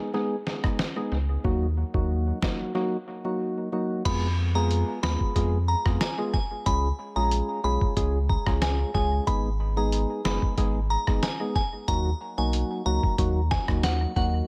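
Hypnotic and bouncy, this dancehall excerpt moves at 92 BPM in a straight 4/4, set in Eb minor and cut from a longer piece. A dark, hollow organ stab opens at 0.0 seconds with percussive, decaying hits treated with chorus and analog delay. A lo-fi sampler-style drum kit follows, pitched down, muffled and compressed, with a thumpy kick, medium-tuned snare, rim click, hi-hat and crash cymbal, re-recorded in a small room and carrying its own analog delay. Underneath, a saturated sub bass sits deep, thick and sustained, up front in the mix. After a short break, a glassy, crystalline synth bell enters at 4.1 seconds, warbling and vintage in character, bright in the high register and treated with chorus, phaser and analog delay. The harmony moves from Abm to Ebm, then through Fdim and Db before returning to Abm and Ebm, all within a light-reverb, echo-heavy mix.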